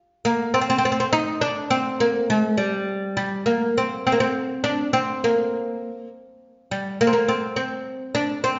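An oud carries this brief fragment of an Arabic maqam piece alone, its woody, double-strung tone sitting up front from 0.2 seconds until it falls silent at 8.6 seconds. The fretless, plectrum-plucked instrument stays within a compact range from G3 to Eb4, giving the line a soulful, longing character. The music moves in a slow, straight 6/8 at 68 beats per minute counted in dotted quarters, with the tuning set to A4 = 439 Hz. A first passage gives way to a contrasting second one at 3.5 seconds. The sound is that of a live performance in one large studio, bathed in a generous reverb with a 1.4-second tail, while the top end is rolled off above 7.5 kHz, lending the recording a soft, dusky cast.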